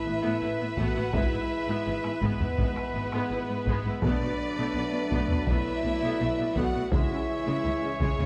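Epic orchestral film score in B dorian at 83 BPM, dark and heroic, where a lush, vibrato-rich violin section carries the melody over a second clear, distant violin line and a very quiet, hollow silver flute, while mellow French horns and a tight, bright trombone section hold sustained chords, a roomy solo trumpet adds stabs, background violas accompany, close cellos and distant double basses fill the low end through Asus2, E/G#, Bm7 and C#m, a barely audible sub drop marks the opening impact, and a heavy, band-limited taiko ensemble enters at 0.8 seconds to drive this short cut from a longer piece on a moderate scoring-stage reverb.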